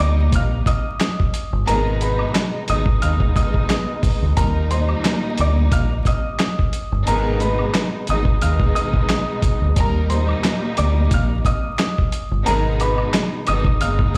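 Boom-bap hip-hop with a nostalgic, confident mood, this short cut sets a dark, woody upright piano melody, slightly detuned and touched by analog delay, over a lush symphonic string section with expressive vibrato and portamento that carries a cassette-tape tint. A round, deep dub fingered electric bass sits up front from the start, joined at 0.3 seconds by a gritty, compressed sampler-style drum kit with thumpy kick, handclaps, hi-hat and snare, also up front, while maracas and woodblock add an acoustic live-room feel in the background. Intense, bright studio string stabs appear between 1.7 and 12.8 seconds, and the whole mix plays as if through a big sound system in a bare room, with large studio reverb and vinyl crackle.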